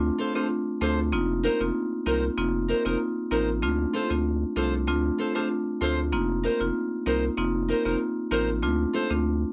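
Dancehall at 96 BPM in D phrygian, sultry and tough, cut from a longer piece, with a deep, thick sub bass warmed by tube saturation sitting under a dark, fingerpicked steel-string acoustic guitar playing arpeggios and a close-miked marimba struck with medium hard mallets for accompaniment. The harmony moves between Dm7 and F7sus4, and all three parts sit up front in a dry, gritty recording with light reverb, the bass starting at 0.0 seconds and the guitar and marimba joining by 0.4 seconds.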